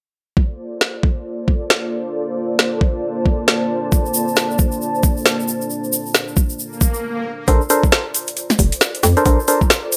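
UK garage in a bouncy, soulful two-step style with a swung feel, this passage from a longer piece opens on a mellow, detuned sawtooth pad holding sustained Bbmaj9 chords, gently pumping under the sidechain. An overdriven electronic kick and a garage kit with a woody snare and metallic hats sit up front, joined shortly after by a deep, moody ambient pad that fades in from 2.0 seconds with a slow attack, long release and a dark built-in reverb. A grainy, bright egg shaker enters close at 3.9 seconds, and an electronic swell carries the track through a brief break in the harmony. At 7.5 seconds the groove steps up: a hollow, punchy FM bass with a fast, decaying attack and tube saturation bounces beneath percussive organ stabs coloured by chorus and delay. The whole track sits in a light digital ambience with a soft analog glow on the chords.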